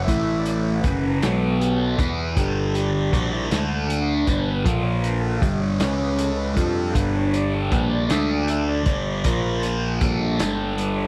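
Psychedelic rock in a slow 6/8 at 52 BPM, this kaleidoscopic, trippy excerpt is cut from a longer piece. A thick, double-tracked fuzz guitar sits up front with its riff, its distortion colored by a phaser. Beneath it, a fuzz-toned picked electric bass gives a dark, round and punchy low end with overdrive. An overdriven combo organ holds mellow sustained chords with a light vibrato and also carries a solo throughout the passage. A vintage drum kit on hi-hat, kick and snare sounds muffled and lo-fi, with a tight kick, a medium-tuned snare and a rolled-off top. Power chords on A, F#, B, E, D, G, Bb and C# pass by, with Gsus2 chords at 2.4 and 10.0 seconds, all set in a small room with light reverb.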